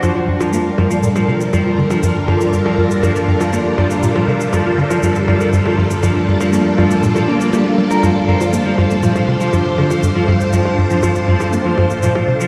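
Heard through a wet concert-hall reverb with cassette-tape grain and the boom of a big sound system in a bare room, this cosmic, mysterious stretch of ambient, sequencer-driven space music in G minor at 120 BPM rests on a single Gm7: a lush, vintage string machine holds phased, chorused chords up front, a dark, slightly broken-up electric guitar plays delayed arpeggios, a tight, punchy sequencer bass drives a sawtooth riff through chorus and delay, and electronic percussion blips and shaker sit low in the mix with their own echoes.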